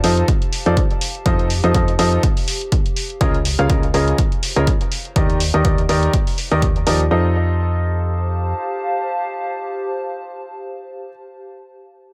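Euphoric and joyful, this short piano house excerpt moves at 123 BPM in 4/4 with a lightly swung sixteenth-note feel, sitting in F mixolydian over F7, Db69 and Ebmaj7 chords. A clear, up-front grand piano carries the riff throughout, its sound pumping against the kick and trailed by a digital delay. Beneath it, a round FM bass with a fast attack and decaying notes pumps in the low register until 8.5 seconds. A punchy analog kick, re-recorded in a small room, drives the groove from 0.3 seconds, locking in with an electronic hi-hat that has ticked along from the very start and drops out at 7.1 seconds as the passage shifts back to F7. A warbling, nostalgic lo-fi pad of detuned square, triangle and sawtooth tones swells in slowly with chorus, phaser and its own reverb, sustaining quietly underneath, while light reverb gives the whole piece a little air.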